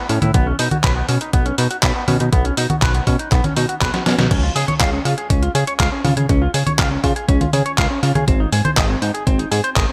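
An up-front, detuned 8-bit drum machine drives this sunny, playful italo disco excerpt at 121 BPM. Its tape-warm, medium-tuned snare, handclaps, congas, hi-hat and crash cymbal are bathed in gated reverb, with a drum fill at 3.9 s, and a thumpy electronic kick joins at 0.3 s. A glossy, retro, chorused synth bass blending pulse-wave and sawtooth tones with a filter pluck holds down the low end. Above it, a bright, twangy, clean electric guitar picks arpeggios through an envelope filter and digital delay, all in light reverb, as the straight 4/4 groove moves from Cbadd9 to Db to Ab.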